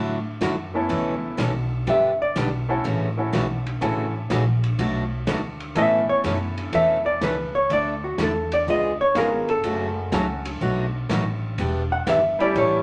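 Down-home and playful, this swung 124 BPM western swing excerpt sets bright, full-bodied picked acoustic guitar with finger squeak, thumpy gut-string upright bass, a muffled lo-fi vintage drum kit and a clear, intimate upright piano with audible action noise under a dark, clean hollow-body jazz guitar that takes the lead with a brief phrase at 1.9 s before returning at 5.8 s to solo through chords moving from Dadd9 to Em7, all in a moderate club reverb.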